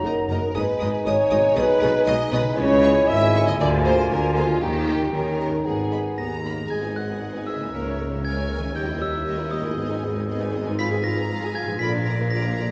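Bathed in a wet concert-hall reverb, this quirky, magical cinematic excerpt in G# minor moves at 118 BPM in 2/4, with a distant, lush violin section carrying the melody over a second violin section with vibrato and portamento, background violas, rich cellos, smooth double basses and a punchy tuba in the bass, and a very quiet ringing harp playing arpeggios, while a pure, crisp flute, a roomy clarinet, a bassoon and mellow French horns holding sustained chords drop out at 6.4 seconds, just after a dark, bell-like glockenspiel joins the melody at 6.2 seconds.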